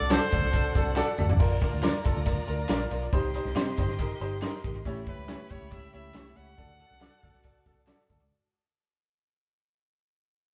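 Fading out from its first moment, this driving, urgent uptempo 1960s-style soul excerpt at 139 BPM opens with a brilliant trumpet melody with scooped notes over a smooth, bowed violin section, a clear but worn grand piano that drops in a fill at 0.5 seconds, and a dark, round, foam-muted electric bass. Twangy electric guitar stabs with tremolo and tape echo, a punchy, up-front country drum kit and saturated handclaps and tambourine join at 0.1 seconds, the band playing live together in a stone room, before the trumpet returns at 5.1 seconds as the chords move from D through Bb, C minor and A7 back to D.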